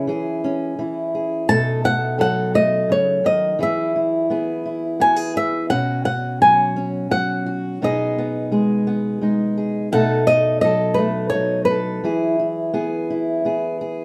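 This folk fragment, cut from a longer piece, moves at 85 BPM in a straight 3/4 and carries a gentle, hopeful mood in B mixolydian. A flamenco guitar, fingerpicked and placed up front, carries the melody in a register from B4 to A5 with a warm acoustic tone. Beneath it, a fingerpicked steel-string acoustic guitar plays the accompaniment from B2 to A4, also up front and with a concert-style acoustic character. The harmony passes through C#m, B7, E, Bsus2 and G#m/B before returning to B7 and settling on E. A moderate studio reverb gives the pair a natural sense of space. The melody guitar stops at 13.4 seconds, leaving the steel-string accompaniment to ring alone until 14.0 seconds.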